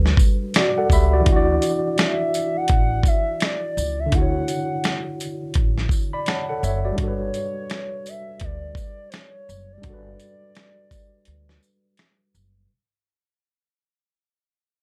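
A hazy cassette-tape sheen and light reverb wrap this dreamy, cosy lo-fi hip hop fragment, cut from a longer piece and fading out across its whole length at a relaxed 84 BPM with a gentle 16th-note swing. A worn, slightly out-of-tune tine electric piano sits up front, lightly overdriven as if through built-in speakers, and comps on Gmaj9 and Dmaj9 with brief fills of its own. Under it, a pizzicato upright bass adds a dark, woody low end, while a gritty, compressed sampler-style drum kit, re-recorded in a small room, pushes a thumpy kick, medium-tuned snare, hi-hat, shaker and finger snaps to the front. A close, dry tambourine adds a faint jingly shimmer. At 2.0 seconds a hollow, soft clarinet-like synth lead enters with a detuned square-and-triangle tone, a noise layer, chorus and vibrato, carrying sustained melody notes until a break arrives at 11.3 seconds.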